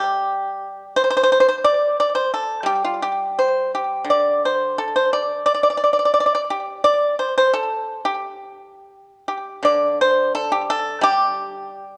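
A solo pipa, plucked with fingerpicks and placed up front with a percussive, slapback-echoed tone, spans D3 to D5 in an elegant, pastoral Chinese traditional piece in 2/4 with a free rubato feel, opening with one section before shifting to a new one at 9.6 seconds in this 12-second fragment of a longer work, all set in a wet recital hall reverb with a dark, warm production.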